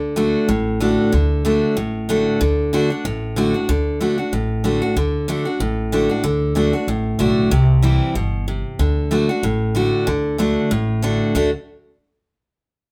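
Lively, rustic bluegrass at a brisk 188 BPM with a light swing in D mixolydian, this excerpt features an up-front, bright and full-bodied picked steel-string acoustic guitar moving from D to C and back to D, over a woody, thumpy pizzicato upright bass, both playing together from 0.0 to 11.5 seconds in light reverb.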